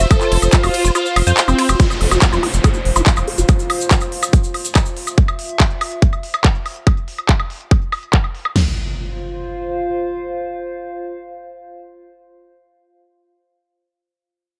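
A straight 4/4 groove at 142 BPM drives this intense, hypnotic psychedelic trance excerpt. It rests on an up-front dance kit with a punchy kick, huge snare, crash and toms, a second layer of crisp low-passed hats, handclaps, ride and woodblock, a grainy tube shaker, and a round, deep analog bass underneath. In the opening drop, a screaming, guitar-like overdriven lead with phaser and delay sits over a woody wave-folded pluck riff with chorus and digital delay and a swarming, tense drone in the background, and the kick drops out from 1.0 s to 1.8 s; from 1.8 s a filter sweep moves across a synth arpeggio sound as a downlifter and impact arrive, while a warbly, nostalgic tape-like pad with chorus, reverb and sidechain pumping sustains to the end.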